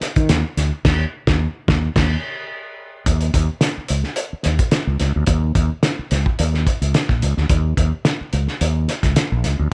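Energetic and funky, this short slice of a longer funk piece moves in a straight 4/4 groove with a dry, close sound. A mellow fretless electric bass, dark and round, sits up front beside a cloth-damped, thuddy acoustic drum kit whose muffled, gritty character brings a fat snare, tight kick, dark cymbals and hi-hat, with a crash adding color. The whole band hits accents from 0.8 to 3.1 seconds before the groove moves into a new section at 3.1 seconds.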